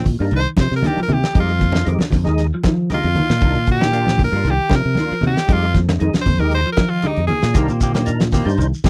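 A raspy, forceful tenor saxophone solo opens this intense, defiant afrobeat excerpt over clean picked semi-hollow guitar arpeggios with ensemble chorus, a round, punchy fingered bass, ringing background congas, a damped 70s drum kit with a fat snare and tight kick up front, and a lightly overdriven tonewheel organ with key click and slow rotary speaker, while dark semi-hollow guitar stabs and a grainy shekere join at 7.5 and 7.6 seconds in a dry, close 1970s-style studio sound.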